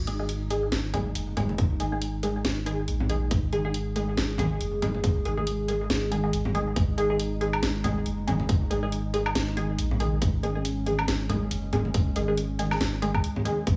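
A tight, up-front electronic kick arrives at 1.6 seconds to anchor this brooding, meditative deep dubstep excerpt, which moves with a swung, half-time feel alongside a garage kit of cracking snare, bright hats and woodblock, plus hard-handed congas carrying dub echo. A round, soft sub bass sits beneath muted, full-bodied chord stabs dressed in phaser, lush chorus and dub echo. A nasal, moody analog pad sustains its chords underneath before a short break at 13.2 seconds.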